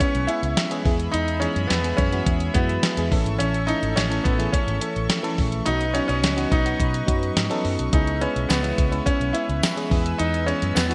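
Bathed in a lush hall reverb with a polished, bright 1980s-style digital sheen, this urgent, moody pop excerpt moves at 106 BPM in C# minor over a C#m7, E, A and Badd9 progression. A brilliant, up-front concert grand piano carries the melody through a digital delay, while a glassy, bell-like FM electric piano with chorus supplies the accompaniment and a shimmering pulse-width pad holds sustained chords in the background. A sampler-style drum machine with a thumpy kick and fat snare, all treated with gated reverb, drives the groove alongside a dark, foam-muted fingered bass entering at 0.1 seconds, and a jingly, very quiet tambourine joins at 8.5 seconds.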